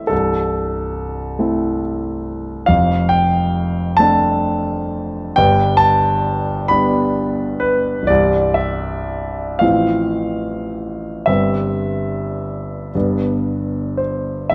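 Flowing in a lilting 12/8 with dotted-quarter pulses, the rhythm breathes freely under a gentle rubato that lets each phrase stretch and settle. This is a romantic classical nocturne for solo grand piano, tender and serene in mood, heard as a short passage lifted from a longer work. The piano carries everything alone across the whole 14.5 seconds, reaching from the deep bass at C1 up to B5, and its tone sits warm and close in the foreground. The harmony drifts from Am/C through Dm7/F and G to a resting C, then moves on through F/A and C/G before settling on G. A generous recital-hall reverb with a 1.5-second tail surrounds the instrument, and the dark, mellow production gives the whole passage a warm glow.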